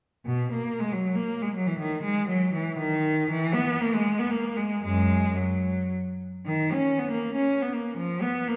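A lone bowed cello enters at 0.3 seconds, its clear, smooth tone carrying vibrato through a short passage cut from a longer, baroque-style suite movement for unaccompanied cello. The mood is serene yet dance-like, moving in 3/4 at roughly 108-121 BPM with a flexible, rubato feel. The single player keeps an even line between F#2 and C#4, sitting up front while still sounding slightly distant. A wet reverb with a 1.7-second tail gives the instrument the resonance of a church or concert hall. The cello plays alone until 8.6 seconds, where this brief fragment ends.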